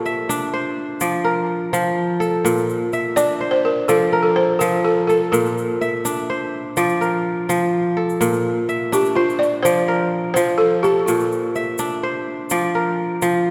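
Set in 12/8 at 84 BPM in F major, this flowing, joyful West African excerpt pairs a crisp, ringing fingerpicked kora playing arpeggios up front with a woody, dry, buzzing balafon melody struck with soft rubber mallets and a grainy, close tube shaker. The recording sits in the long reverb of a church as the harmony sways between Bb and F, with the balafon dropping out at 12.2 seconds while the kora rings on to the end.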